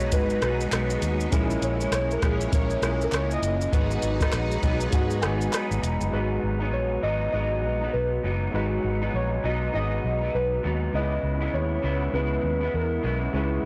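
Lonely and mellow, this bedroom-pop cut in G# minor moves at 100 BPM with a lazy 16th-note swing: warbly, nostalgic synth keys carry the melody as a solo over a round, foam-muted fingered bass and a soft analog rhythm box with a deep kick, metallic hats, rim click and shaker, plus very quiet crisp group handclaps. A slightly broken-up electric guitar through a small old amp drifts in pitch beside a woody, slightly detuned upright piano in the background, which takes a fill at 4.3 seconds, while a lush string machine with phaser holds sustained chords. The drums and strings drop out at 6.1 seconds, leaving keys, guitar, piano and bass in a blown-out, overdriven lo-fi recording with light reverb.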